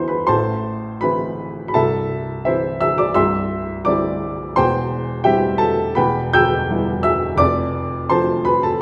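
A solo upright piano opens this brief fragment of a romantic character piece in A minor, its warm, woody, vintage tone placed up front, smooth and with a short sustain. The mood is passionate yet hopeful, moving at around 84 BPM in 2/4 with uneven beats and a free, rubato feel. The piano spans from C1 up to G6, filling both the deep bass and the high upper register on its own. The harmony travels from Am through Am/C to C and C/E, then turns to Em at 6.0 seconds before arriving on F at 7.4 seconds. A moderate recital hall reverb surrounds the instrument, giving it a natural sense of space over the roughly 8.8 seconds it plays.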